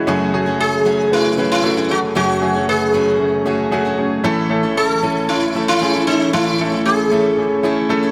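A lush hall reverb surrounds this short, earnest and bittersweet piano-driven pop excerpt, which moves at a straight 115 BPM in 4/4 and is tuned slightly sharp to A4 = 445 Hz. A warm baby grand piano sits up front with a natural tone, carrying the accompaniment across a broad range from its low bass to the middle register. A picked steel-string dreadnought guitar adds a full-bodied acoustic riff beneath it. At 0.6 seconds a sitar enters up front with the melody, its plectrum-plucked notes round and buzzing, shimmering with sympathetic strings. In the background an airy, breathy pad holds soft sustained chords, its detuned sawtooth and triangle tones blurred by chorus and a gentle noise layer. The harmony rests on F#madd9 before shifting to A at 4.2 seconds.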